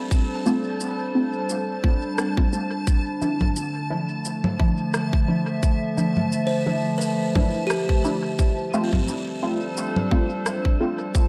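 Dark, hazy production sits in a moderate echo-chamber reverb, giving this cut from a longer ambient dub piece a deep feel with a light swing. Up front, a warbling, lo-fi tape-like pad holds nostalgic sustained chords that move from G7sus4 to Dmadd9 and back, joined by a tight electronic kick and a produced shaker, rim click and congas kit. A muted, phased dub chord stab with dub echo pulses beneath, a reversed, granular texture swells brightly in the background, and a woody, buzzing kalimba plays airy arpeggios at the start before returning at 6.5 seconds.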